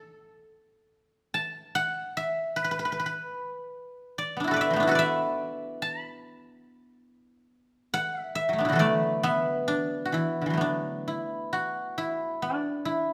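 A solo guzheng, played with fingerpicks and sitting up front with a silvery, ringing tone, carries this elegant, flowing excerpt of Chinese traditional music in a loose rubato, moving into a new section at 10.1 seconds as a moderate recital-hall reverb lingers around the plucked strings.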